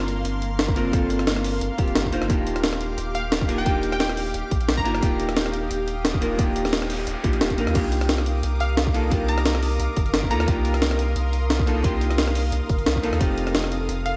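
A glassy, crystalline wavetable pluck with 12-bit grit and diffuse delay drifts in at 3.1 s over a soulful, melancholic liquid drum and bass groove at 176 BPM, where a dark, clean hollow-body jazz guitar with subtle chorus, a shimmering, ethereal pad, a round sine sub bass with tube saturation, a gritty, compressed breakbeat kit with a high-tuned snare, a punchy layered kick entering at 0.7 s and a very quiet noise sweep at 6.9 s move through Gm11, Ebmaj9, Cm11 and F7 in a dreamy mix soaked in lush hall reverb.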